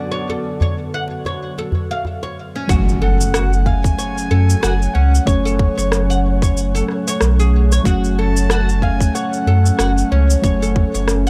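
A deep, round sine sub bass, up front with tube saturation and sidechain pumping, anchors this hypnotic, meditative organic downtempo excerpt from 2.7 seconds, joined by a tight, tape-toned electronic kick, an electronic shaker and rim click, and a very quiet electronic impact. A breathy, flute-like synth lead with vibrato, phaser and delay carries the melody over muted, felt-like synth keys, a smooth, warbling vintage pad in the background with a filter sweep in the opening, and woody, plectrum-plucked oud arpeggios with digital delay. A close, dry, soft-handed djembe plays only briefly near the start, and the chords move from Bm to F#madd9 within a dark digital ambience.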